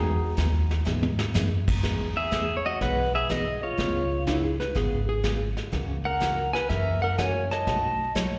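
Swinging in 4/4 at 123 BPM, this down-home western swing country excerpt in E major opens with a short, woody upright piano solo over a bright, full-bodied picked acoustic guitar, thumpy pizzicato upright bass and a dark brushed drum kit that adds a fill near 0.9 seconds; then a twangy, up-front pedal steel guitar takes the melody at 2.2 seconds and a clean lap steel adds a second line from 4.3 seconds, with slapback echo on the guitars, piano and steels, all heard through a live venue PA with recital-hall reverb as the chords move from Emaj7 through C#7 and F#7/C# to B7.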